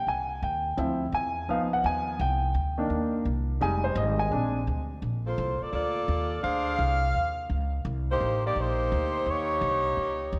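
Heard through the warbling pitch drift of worn old cassette tape and a wet concert-hall reverb, this joyful, swinging big band jazz excerpt at 170 BPM opens with a clear, present baby grand piano playing lush seventh and ninth chords until 4.6 seconds over a woody, thumpy pizzicato upright bass, before a tight, mellow saxophone section with light vibrato takes the melody at 5.3 seconds as the music settles into B-flat major.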